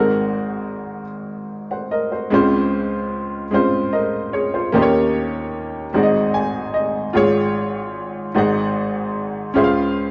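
Set in a moderate large-studio reverb, a woody, smooth upright piano with a vintage, short-sustained tone plays alone up front in this jubilant, hopeful gospel passage in Db major. It moves at 50 BPM in a straight 6/8 from Ab9 through Dbmaj7, Eb7 and Ab7, adds a fill from 5.9 to 7.2 seconds, and comes back to rest on Dbmaj7.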